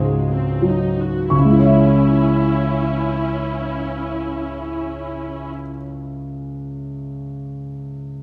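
This romantic classical passage for piano and orchestra, cut from a longer piece, carries a passionate, tragic mood at a slow 50 BPM in 4/4, with a freely breathing rubato feel in C# minor. A concert grand piano carries the melody across a broad compass from deep bass notes up into its upper register, sounding clear, natural and up front, with a long sustain. Beneath it, a symphonic viola section supplies lush, focused accompaniment, its bowed ensemble tone close and rich with vibrato. The opening slows down over its first 1.3 seconds, moving from a G#7 chord over a C# bass to settle on C# minor as a new section begins. The violas fall away at 5.5 seconds, leaving the piano alone until it ends at 8.2 seconds, all set in a moderate scoring-stage reverb that lends the sound a sense of space.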